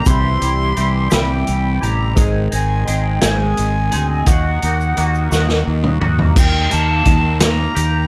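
A flute and a twangy electric guitar open this trippy, mysterious psychedelic rock excerpt together, the flute's pure, distant tone carrying the high melody through a slapback echo while the double-tracked guitar plays a clean, scooped riff through a flanger. A fuzz-laden fingered bass and a vintage drum kit come in almost at once, sitting up front in the mix with overdriven punch and a mid-forward kit sound of dark cymbals, a medium-tuned snare and a punchy kick. A grainy, band-limited tube shaker rustles in the background. The groove moves slowly in 6/8 at 57 BPM, with the chords shifting from C to Ab to Ebm before a drum fill from 5.3 to 6.4 seconds leads into a new section on Eb. The small room ambience gives the whole band a close, vintage studio feel.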